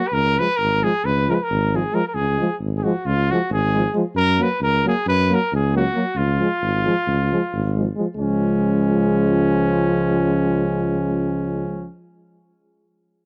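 Wild and festive, this Balkan brass band excerpt drives along in 9/8 at 268 BPM in Db mixolydian, with a dark, punchy trumpet carrying the melody up front while a mellow, close-miked tuba anchors the bass with light vibrato. A smooth-topped French horn and a warm euphonium with vibrato fill in the accompaniment from 0.4 seconds, as the harmony moves from Db to Gb at 4.1 seconds and back to Db at 6.2 seconds. The sound is dry and close, in a vintage 1970s studio style, and the fragment is cut from a longer piece.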